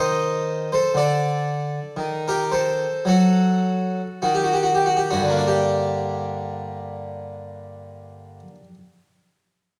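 A solo French-style harpsichord, close-miked and up front with a brilliant, plucked tone from its three sets of strings, opens this solemn, grave baroque-style suite movement in G minor at a slow 47-60 BPM in 4/4 with a rubato feel. Over the first 5.5 seconds it slows as the harmony moves from A diminished to D, then settles onto G minor for the second part, with the instrument sounding until 8.7 seconds. A recital hall's reverberation surrounds the close, full tone of this short excerpt taken from a longer piece.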